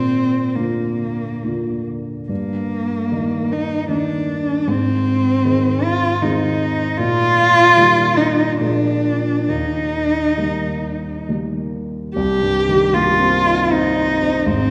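Warm and lyrical, this romantic classical duo in a rubato triple metre, cut from a longer piece, features a dark, bowed solo cello singing the melody with expressive vibrato and portamento over a mellow, vintage-toned baby grand piano whose smooth, long-sustaining accompaniment runs throughout, both set in a wet scoring stage reverb of 1.9 seconds and heard from further back in the room, with the harmony turning to Cm7 at 12.2 seconds.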